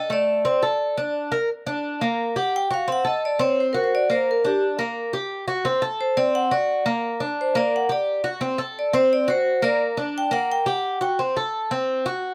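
Latin piece in G harmonic minor at a danceable 173 BPM, cut from a longer work and carrying a nostalgic air: a ringing, dry vibraphone struck with medium hard mallets and its motor off carries the melody, stepping into a solo at 1.5 seconds over Gm, Bbmaj9 and D7 changes. A mellow, up-front Cuban tres with double strings and some octave-doubled courses picks arpeggios beneath it until 12.3 seconds, all captured closely with little reverb.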